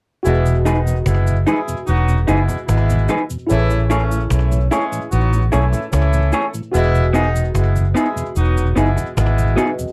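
Lovers rock reggae at 74 BPM in E major, smooth and sweet, where a dark, round, foam-muted electric bass sits up front under slightly broken-up, lo-fi guitar stabs, while a mellow horn section with light vibrato and slapback echo plays a distant second line, a worn, slightly out-of-tune electric piano with phaser and a slow rotary organ with key click hover in the background, and a woody cajon and faint cabasa keep time across Emaj7 and Amaj7 in this dry, close 1970s-style excerpt.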